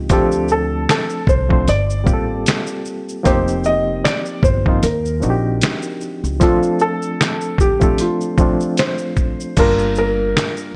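Hazy and nostalgic, this short lo-fi hip hop cut at 76 BPM in G minor sets a soft, intimate felt-muted upright piano melody with audible action noise over a barky, lightly overdriven electric piano with fast tremolo, woody pizzicato upright bass and a gritty, pitched-down sampler-style drum kit with thumpy kick, handclaps, shaker and crash, all in light reverb as the chords move from Dm7 through Gm11 and Ebmaj13 to a closing Gm7 at 9.6 seconds.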